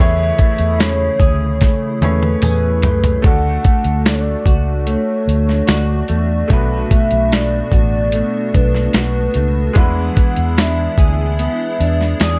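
A warbly, nostalgic synth lead with a subtle chorus opens this sunny, laid-back bedroom pop excerpt in A major at 74 BPM, over a bright, woody upright piano with audible action noise, a dark clean electric guitar drenched in lush chorus and pitch drift, a hollow, flute-like pad and a round, foam-muted vintage bass sitting up front. A gritty, compressed sampler-style soul kit with a thumpy kick arrives at 0.4 seconds and plays a fill from 1.6 seconds, while a jingly, band-limited tambourine sits in the background from 0.8 seconds. The chords move from Amaj7 through Dmaj7 and Bm7 to E7 in a dry, close mix.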